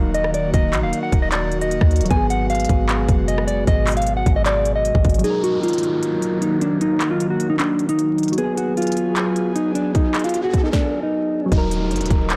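Melancholic and menacing, this half-time trap hip hop excerpt at 153 BPM in Eb harmonic minor sets a mellow, dark electric guitar melody, treated with phaser and digital delay, up front over round, chorused electric-piano-like synth keys and an airy, breathy, detuned pad. Beneath them sit a trap kit of crisp hats, sharp snare, handclaps, rim clicks and a hard-clipped kick, and a deep, boomy 808-style bass that drops out at 5.2 seconds and returns at 11.5 seconds. Meanwhile a downlifter sounds and a riser builds from 8.4 seconds, carrying on through a brief stop at 10.7 seconds, the mix holding light reverb, vinyl crackle and a blown-out, overdriven sheen.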